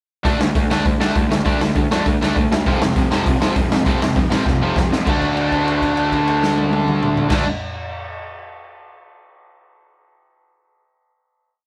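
Punk rock with an urgent, raw edge, played at a fast straight four by a band captured live together in one room with light reverb. From the opening, an overdriven electric guitar and a tighter distorted guitar set back in the mix both chug palm-muted eighth-note riffs, while a fuzzy, growly picked bass drives eighth notes underneath from the background. The garage drum kit sits up front with a boomy kick, a medium-tuned snare, dark cymbals and a gritty, saturated tone with a rolled-off top and a pumping small-room sound, playing a two-step groove. At 2.7 seconds a third distorted guitar joins, double-tracked and compressed but very quiet, adding driving eighth-note power chords beneath the bright guitar layers. A drum fill at 4.5 seconds leads into a final chord at 5.1 seconds, which the band holds as a sustained note to close this short, complete piece.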